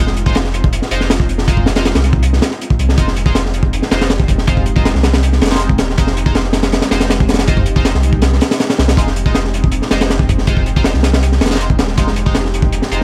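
A crunchy breakbeat kit sits up front with a high-tuned snare, a tight kick and a gritty, rolled-off top, driving this dark, atmospheric 160 BPM drum and bass jungle excerpt in F minor, over a thick saturated sub bass, nasal band-passed chord stabs with phaser, analog chorus and dub echo, and an ethereal detuned pad with ensemble chorus and built-in reverb sustaining an Fm7 chord in the background, all wrapped in vinyl crackle.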